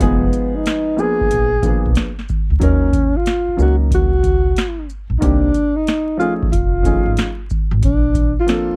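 A breathy, whispered alto saxophone with subtone, vibrato and scooped notes carries the melody up front through this cool, relaxed jazz-hop excerpt at 92 BPM with a swung 16th-note feel. A dark, mellow grand piano with short sustain comps beneath it, a woody pizzicato upright bass thumps low, and a booming analog drum machine with deep kick, crisp snare, metallic hats and shaker sits forward. All of it is captured in a dry, close 1970s-style studio sound with vinyl crackle as the harmony moves from Fm7b5 through Ebm7 and Cm9 to Bbmaj9 by 7.8 seconds.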